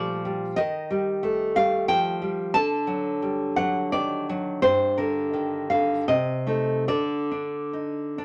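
Intimate and wistful, this brief romantic passage for solo classical guitar, cut from a longer piece, drifts in a rubato 3/4 at roughly 69-93 BPM in G minor, its fingerpicked nylon-string guitar sitting up front with a fresh-stringed, acoustic tone in a moderate studio reverb as it moves from lush Bbmaj13 and Ebadd9 colours through D and Gm to an Adim/C before the harmony falls away at 6.9 seconds.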